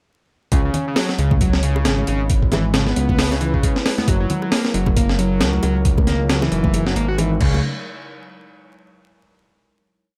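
A swung, looped breakbeat drives this short, energetic and funky breaks piece, with a gritty, pitched-up sampler kit of thumpy kick, high-tuned snare, hi-hat and crash sitting up front, while close, dry bongos and congas play a hard-handed loop in the background. A fat, detuned sawtooth bass with long gliding notes and a screaming, guitar-like overdriven synth lead repeating a 32-step sequence with vibrato carry the drop over C#m and F#7 from 0.5 seconds. A warbling, nostalgic lo-fi pad with chorus and sidechain pumping joins at 1.3 seconds, all under a layer of vinyl crackle, before a final hit rings out from 7.6 seconds.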